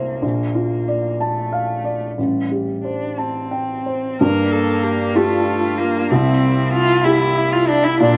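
A soft, intimate felt-muted upright piano sits up front alongside a smooth, vibrato-laden bowed cello carrying a second line with slapback echo as this melancholic, fragile neoclassical passage opens at 62 BPM in a rubato 6/8 in G dorian, and at 4.2 seconds a single rich viola enters in the background over a very quiet, reedy, breathing pedal harmonium while the chords move from Bbmaj7 and Am7 to Gm7 and C7, all captured in a dry, open-air recording.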